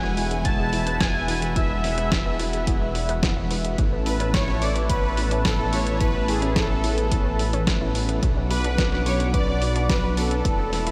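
A steady, straight 4/4 pulse at 108 BPM drives this short synthwave cut, with a clean 12-bit drum machine laying down hi-hat and a fat, sampler-style snare, and a punchy, tape-warm electronic kick arriving at 0.5 s. Underneath, a dark, detuned saw bass rumbles up front with a saturated, beating edge and sidechain pumping, while a mellow analog pad with chorus breathes through sustained chords that also pump. The soft supersaw carries the melody, smooth and gently detuned, colored by phaser and analog delay. A clean tine electric piano adds stabs from the background through a combo amp with analog chorus and delay, a very quiet, nasal analog pluck ripples through arpeggios, and a lush FM electric piano with a soft pad layer floats a second line high above. The harmony moves from Eadd9 to Aadd9 and then to Bmadd9 at 8.2 s, and the whole dreamy mix is soaked in a huge ambient reverb, giving the piece a driving yet nostalgic glow.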